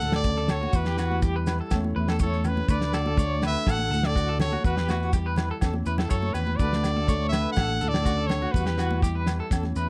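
A brilliant, punchy trumpet with light vibrato carries the solo melody in this joyful highlife guitar band excerpt at 123 BPM in D major, over a fingerpicked flamenco guitar with audible finger squeak and a twangy, slightly broken-up electric guitar playing arpeggios through tremolo and slapback echo. A dark, round fingered electric bass and a damped 70s drum kit with a fat snare and tight kick anchor the groove, while grainy maracas and ringing agogo bells sit in the background and very quiet, high-tuned congas enter at 0.5 s. The sound is a dry, close 1970s-style studio recording with a warm feel, cycling through D, Em and A/E.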